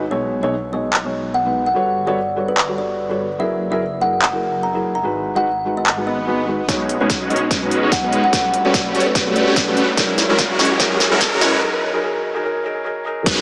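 A huge, bright supersaw riff with phaser and cassette-tape colour arrives at 6.7 seconds alongside a punchy electronic kick, lifting this lush future bass excerpt in B major at 146 BPM in a swung half-time feel, where a woody, ringing kalimba melody with dub echo and a soft felt-muted upright piano with audible action noise pump over a very quiet, thick detuned saw bass, a big-room kit with a huge snare and crisp hats enters at 0.9 seconds, and background swells and risers build toward a break at 11.6 seconds under a moderate huge ambient reverb.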